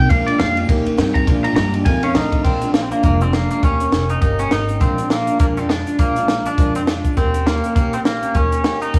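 Rollicking and upbeat, this swung rockabilly cut races along at 203 BPM in 4/4, tuned to A4 = 435 Hz, cycling through Bb7, Eb7 and F7 chords. An up-front twangy electric guitar carries the melody with lush chorus and tape echo, while a small-old-amp electric guitar adds a slightly broken-up riff through the first 2.4 seconds, which also feature a clean electric guitar solo. Underneath, a full-bodied dreadnought acoustic guitar picks along with audible finger squeak, a woody pizzicato upright bass holds the low end, and a dry cocktail drum kit with a high-tuned snare, punchy kick and dark cymbals drives it all in a small, lightly reverberant room.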